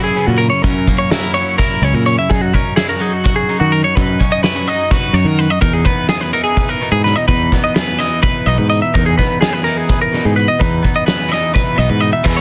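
Wistful and intricate, this math rock and midwest emo excerpt moves in 7/8 at 253 BPM in E lydian. Two chiming twelve-string electric guitars open the excerpt: one plays accompaniment up front, bathed in spring reverb, while the other spins bright, twangy arpeggios over F#7, Badd9/F# and Emaj7 chords. A loose indie drum kit with a fat snare, punchy kick and dark cymbals enters at 0.2 seconds, a growling overdriven fingered bass joins at 0.3 seconds, and a double-tracked overdriven electric guitar riff arrives only at 12.2 seconds, all within a dense, heavily limited modern master.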